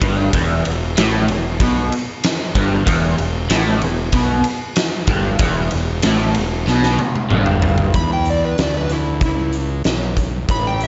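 Gritty and driving, this blues rock power trio excerpt leans into southern rock at a straight 95 BPM in 4/4, tuned slightly below standard pitch. A crunchy, bright, double-tracked electric guitar carves out a low riff from the start, colored by phaser and slapback echo, while a fuzzed, overdriven fingered bass sits up front beneath it. A huge arena drum kit with a fat snare, punchy kick, hi-hat, ride and toms fills a big room and rolls into a fill from 6.7 to 7.9 seconds. As the riff guitar stops, an overdriven slide guitar takes over the melody at 8.0 seconds, singing high with a warm tone and its own slapback echo. A lush hall reverb blended with small-room ambience wraps the mix, and the top end is dark and rounded, giving the sound a heavy weight.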